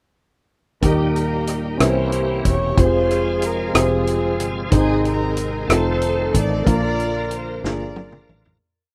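Jubilant and uplifting, this short, slow gospel piece sways in a straight 6/8 at 62 BPM, moving through a verse from Eb toward Bb. A chamber string section carries the melody with hook-like motifs, its gut-string tone reedy and close with light vibrato and a touch of tape echo. A grand piano plays close-voiced quarter-note chords with grace notes, its intimate sound revealing audible action noise, while a bright tonewheel organ shouts sustained chords through a slow rotary speaker with chorus vibrato and key click. Fingered electric bass, foam-muted and punchy, plays a slow gospel line with slides and chromatic approach notes beneath a dry, up-front soul drum kit of tight kick, medium-tuned snare, hi-hat, rim click and toms. The rough home demo mix is nearly free of reverb, and the piece fades out from 6.7 seconds as a drum fill from 7.6 seconds carries it to its close at 8.6 seconds.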